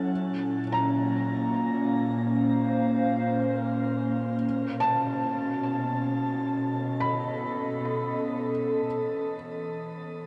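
Spacious and reflective, this brief ambient fragment drifts in free time, cut from a longer piece. A warbly, tape-like pad sits up front from the start, holding sustained chords from A#2 to F#5 with a detuned, nostalgic lo-fi haze, slow attack and long release, colored by chorus and its own reverb. Alongside it sits a felt-muted upright piano, softer in level, playing gentle arpeggios high in the register between F#5 and B5 through a delay, its tone mellow and intimate until it stops at 9.4 seconds. The harmony moves from A#madd9 to B7 at 4.4 seconds, then settles on E5 as a filter sweep passes over the pad from 8.9 seconds to the close. A shimmering reverb with a long 7.8-second tail and a dark production give the whole a hazy, enveloping depth.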